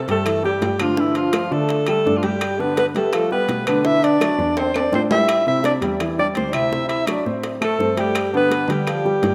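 A breathy alto saxophone, with subtone, scooped notes and light vibrato, carries the melody up front in this lively, sophisticated Afro-Cuban jazz excerpt at 167 BPM in G mixolydian, with a clear, vintage-toned trombone playing a second line beneath it. A warm, intimate grand piano with audible action noise supplies the accompaniment, while a dark, distant bowed cello holds the bass. Ringing metal-shell timbales, tight bongos, soft-handed congas and woody claves fill out the percussion, with a drum fill at 4.6 seconds. The rough home-demo mix sits in a lush, wet hall reverb, and the harmony moves from a rootless Cadd9 through Bm and Am7 to D7 and G7.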